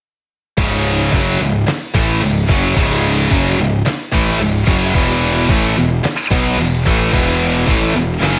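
Epic and aggressive, this heavy metal passage in C# minor, cut from a longer piece, drives at 110 BPM in a straight 4/4, with everything entering together at 0.6 s and running to 8.4 s as the harmony moves from C#m to E5 at 4.9 s. Two up-front picked guitars carry the riff, one scooped and high-gain, the other tight and bright, while a growly fuzz electric bass, direct and amped with overdrive, sits low beneath them. A lo-fi sampler-style drum kit, compressed, pitched down and muffled, adds a thumpy kick, medium-tuned snare and crash cymbal with a small-room character, all set in a digital ambience.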